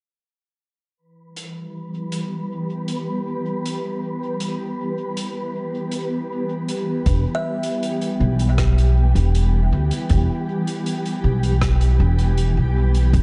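A meditative, deep ambient dub piece opens with a soft-mallet drum kit ticking hi-hat and rim clicks in a big-room sound, as a blurred, full-bodied granular cloud pad sustains chords under a filter sweep, with an airy, breathy wind-like noise layer drifting above. At 7.1 seconds a thumpy, woody pizzicato upright bass arrives up front alongside a deep, layered electronic kick set in the background. A hollow, ringing kalimba briefly picks out arpeggios through tape echo, all within a dark, warm small-room production.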